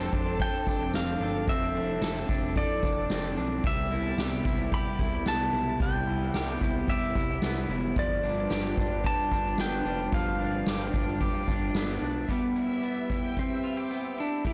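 A twangy, clean pedal steel guitar carries the melody through delay over a hollow, flute-like pad with chorus and a slightly broken-up electric guitar picking lush, chorused arpeggios, while a fat, detuned sawtooth bass with tube saturation and a soft-mallet drum kit with a boomy kick and dark cymbals set an ethereal, blissful dream-pop pulse at 111 BPM in C major. At 0.7 seconds and again at 9.8 seconds a reversed, granular swelling texture glimmers brightly in the background, and the harmony drifts through F6, Cmaj7 and G7 before the bass drops out at 12.3 seconds as the chords return to Cmaj7. The whole mix sits in a small room with light reverb, yet the recording itself sounds blown-out and overdriven.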